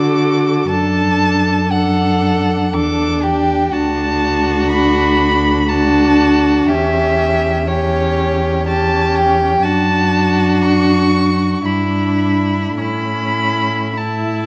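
A recital-hall sound with moderate reverb frames this warm, lyrical excerpt from a slow romantic string quartet movement in 3/4 at 50-62 BPM, played with rubato and settling into D major from 3.7 s: a dark, up-front muted first violin sings the melody with vibrato and portamento over a softly attacked second violin line drawn with an airy bow, a distant muted viola accompaniment that also slides with portamento, and a close, up-front muted cello bass, the harmony passing through Em6 and Em7/G before arriving on A at 12.8 s.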